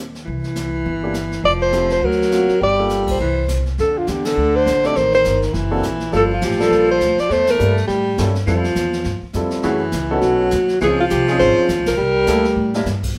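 A breathy alto saxophone carries the melody up front, its subtone sound, gentle vibrato and scooped notes entering at 1.5 seconds, pausing at 7.8 and returning at 10.8 seconds. This is a relaxed, playful slice of small-group swing and bop, taken from a longer piece, moving at a brisk 205 BPM in 4/4 with a swung eighth-note feel in F major. Beneath it, a mellow baritone saxophone plays a second line with a smooth top and scooped phrasing. An intimate grand piano comps with long sustain and audible action noise, while a pizzicato upright bass on gut strings gives a woody, thumpy foundation. The brush drum kit adds dark cymbals, a medium-tuned snare and a boomy kick, with band accents punctuating the tune and a short drum fill near the end. Recorded live in one room with light reverb, the band moves through rich harmony of altered dominants and extended chords, closing on C13.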